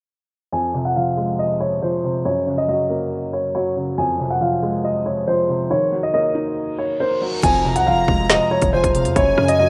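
Tense and cold, this half-time drill cut at 139 BPM in F phrygian opens with a dark, boxy grand piano melody carrying analog delay over a soft, felt-muted upright piano with audible action noise, soon joined by a very quiet, evolving sawtooth pad, while a filter sweep builds until a background reverse cymbal and impact usher in, at 7.4 seconds, a biting chamber violin section with delay, a punchy sine 808 bass and an up-front electronic drum kit with hard-clipped kick, woody snare and crisp hats, all sitting in a lush hall reverb within a rough home-demo mix.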